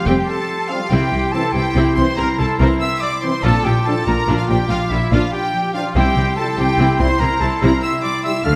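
A scoring-stage reverb gives this heroic adventure-film cue a moderate, spacious bloom, and the mood is soaring and adventurous at 96 BPM in 12/8. It is cut from a longer piece. A distant, intense violin section carries the melody with lush vibrato, shadowed by a second line from an airy, close-miked flute, a roomy solo oboe, a soft-edged studio violin section in the background and a warm solo clarinet lower down. A ringing, fingerpicked concert harp spins arpeggios beneath them, while a distant trumpet section adds stabs and a very quiet, dark French horn section holds sustained chords. Focused violas fill in the accompaniment, and focused cellos join a smooth, even double bass section on the bass line, grounding the harmony as it moves from Fadd9 through C and Bb back to C. Soft-mallet timpani with a round tone make a brief, very quiet appearance at 5.9 seconds.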